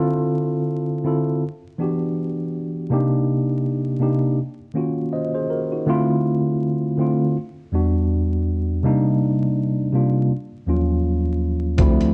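Lo-fi hip hop with a hazy, nostalgic mood: a mellow tine electric piano with cassette-tape colouring plays up front, alone through a looping minor-ninth progression, until a gritty, dusty sampler-style drum kit with a thumpy kick and hi-hat and a smooth, gliding synth bass sitting in the background enter at 11.8 seconds, all wrapped in dark production, small-room reverb and vinyl crackle before this cut-off fragment ends at 12.1 seconds.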